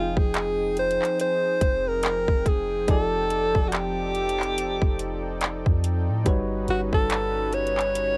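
A slow 71 BPM trap groove with swung sixteenths arrives at 0.2 seconds, carried by a hard-clipped kick, metallic hi-hats and handclaps sitting up front beneath a deep, boomy 808-style bass with a noisy edge. Over this contemporary R&B bed, a bright, close-miked alto saxophone plays a sensual, longing jazz-style solo with vibrato, while soft, round electric-piano-like synth keys with chorus murmur in the background and a smooth, detuned sawtooth pad breathes with sidechain pumping. The chords move from Fm9 to F13 and then Eb7alt/G in this fragment of a longer piece, and the dry home-cassette recording lends the saxophone, keys, pad and drums a tape-worn character.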